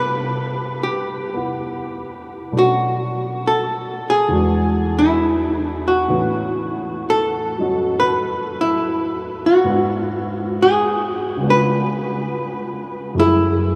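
Swung eighths in a slow 4/4 at 68 BPM carry this intimate, tender jazz ballad fragment, where a dark, clean, hollow-body archtop guitar picks the melody up front over warm baby grand piano chords moving from Cmaj9 through A69 to F#m9, the whole bathed in a huge, echoing ambient reverb.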